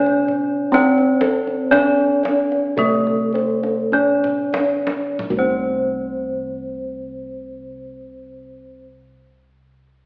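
A bronze metallophone opens this ceremonial, shimmering gamelan excerpt with the melody, its ringing, bright tone struck with a horn mallet and placed up front. Alongside it, bossed gongs with a round, beating, airy sound and a second, mellow metallophone, played softly with padded disc mallets, spin arpeggios above; that second instrument's paired tuning produces close-miked, dry, full shimmering beats. Lower bossed gongs, dark and smooth, carry the bass, while a tight, vintage-sounding kendang with hard hands joins at 0.1 seconds. The tempo sits in a slow 4/4 between 45 and 67 BPM and slows through the opening stretch, with a kendang fill from 3.9 seconds before the drum falls away at 5.8 seconds. The recording has a band-limited AM radio character set in a reverberant recital hall.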